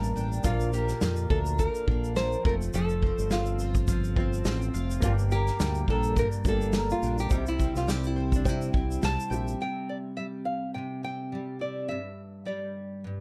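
A lightly swung sixteenth-note groove at 105 BPM in 4/4 drives this heartfelt, sunny acoustic pop excerpt, with an up-front country drum kit of punchy kick, snare and shaker and a round, fingered electric bass through an envelope filter moving under a Bb, F, Gm and C progression. A bright, fingerpicked nylon-string guitar carries the melody over a full-bodied, double-tracked steel-string guitar, woody mandolin arpeggios and a slightly detuned vintage upright piano sitting in the background. Around 9.6 seconds the drums, bass and piano drop away, the mandolin follows at 10.2 seconds, and the two guitars close out on a G5 chord in a dark, lightly reverberant mix.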